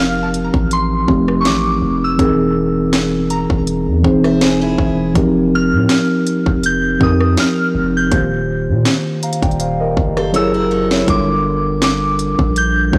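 Moody and sensual, this contemporary R&B cut from a longer piece moves at 81 BPM with a lightly swung 16th-note feel, built on dark, muted felt-like synth keys sitting up front and a deep, mellow 808-style bass holding long sustained notes under chords such as F9sus4, Eb6 and Gm7. A pure FM synth bell carries the melody with chorus and digital delay, while a glassy, crystalline wavetable pluck glimmers in the background and a bright, boxy picked steel-string acoustic guitar adds brief arpeggios around 4.2 and 10.2 seconds. A produced trap kit with a hard-clipped kick, sharp snare and crisp hats enters at 0.3 seconds and plays a fill before the shift at 11.1 seconds, all set in light reverb within a blown-out, overdriven recording.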